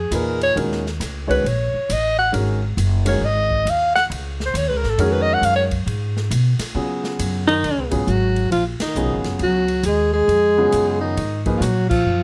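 Spiritual and searching, this modal jazz cut swings at 136 BPM in G# dorian over a G#9sus4 chord, with an up-front alto saxophone soloing with vibrato above woody, thumpy pizzicato upright bass, an intimate grand piano whose action noise is audible, and an airy, polished big-band drum kit with dark cymbals and a punchy kick, before a smooth-topped bass clarinet with scooped notes enters as a second line at 7.5 seconds and the band strikes accents at 8.7 and 11.8 seconds in a moderate studio room.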